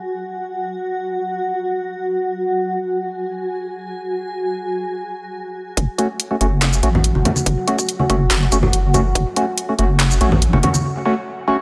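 An echo-chamber reverb wraps this dark, brooding deep dubstep piece in a digital ambience, moving at 142 BPM in a half-time 4/4 feel in F# minor. A cloudy, blurred granular pad opens alone on F#sus2 under a filter sweep, until at 5.8 seconds the chords shift to F#m and the build-up begins. A deep wobbling bass with detuned chorus and tube saturation arrives there, along with a tight, overdriven electronic kick and a garage kit of cracking snare, hi-hat, shaker and handclaps. A hollow, organ-like stab with ring modulation and dub echo joins just after under its own filter sweep, bright vintage congas played with soft hands enter at 7.0 seconds, and a short break closes this portion of a longer track.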